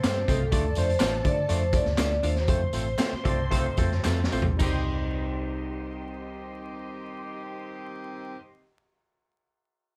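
A straight 4/4 groove in uptempo 1960s-style soul pushes at 106 to 125 BPM in C dorian, with the tempo slowing through the opening as a band accent and a drum fill gather toward a shift to C minor at 4.6 seconds in this driving, passionate fragment of a longer piece. A raw garage drum kit, gritty and up front in a small pumping room, hits a punchy kick, medium-tuned snare, hi-hat, toms and crash until 4.7 seconds, backed by handclaps and tambourine set further back. Underneath, a vintage muted fingered electric bass sounds dark, round and foam-muted through an amp, while a barky tine electric piano, bright and lightly overdriven through a combo amp, carries the accompaniment. A vibraphone with medium mallets states the metallic, ringing melody with slow motor vibrato and slapback echo, as a twangy clean guitar riff and direct-recorded guitar stabs sit compressed in the background. A veiled string section bowing con sordino adds a second line, joined at 2.5 seconds by a distant, roomy jazz-style horn section, all wrapped in a moderate club reverb with vinyl crackle.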